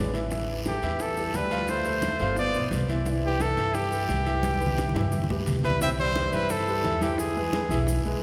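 A straight 4/4 groove at 175 BPM drives this lively, danceable Afro-Cuban jazz excerpt in C major, with thumpy pizzicato upright bass and a clear, vintage concert grand piano laying down the harmony. Raspy guiro, grainy maracas, very quiet low-tuned bongos and bright, thin-skinned congas fill out the percussion, with drum fills at the opening and again from 4.4 seconds. From 0.7 seconds a punchy, forceful trumpet carries the melody up front with light vibrato, joined in the background by a distant, breathy tenor saxophone with scooped notes and a whispered subtone, all bathed in a long church reverb as the harmony arrives on E at 7.2 seconds.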